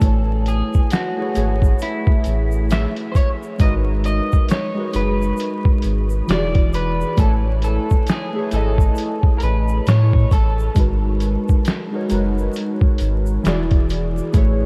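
This lo-fi hip hop excerpt drifts along at 67 BPM in 4/4 with a swung sixteenth-note feel, tuned slightly flat to A4 = 437 Hz, and its mood is reflective and hazy. Warbling, detuned synth keys carry the harmony through a cycle of Amaj7, G#m9 and E7, their nostalgic tone evolving under a filter sweep and softened by chorus and a cassette-tape character. A dark, slightly broken-up electric guitar played through a small old amp picks out the melody in a lush haze of chorus and tape echo, then drops out at 10.7 seconds while the keys continue. Underneath, a soft, round dub sub bass sits up front with a mellow, sustained tone. A compressed, pitched-down sampler-style drum kit anchors the groove with a thumpy kick, a medium-tuned snare and hi-hat, overdriven and muffled as if re-recorded in a small room, while a grainy egg shaker glints faintly in the background. Light reverb and a prominent layer of vinyl crackle wrap the whole mix in a dusty, nostalgic atmosphere.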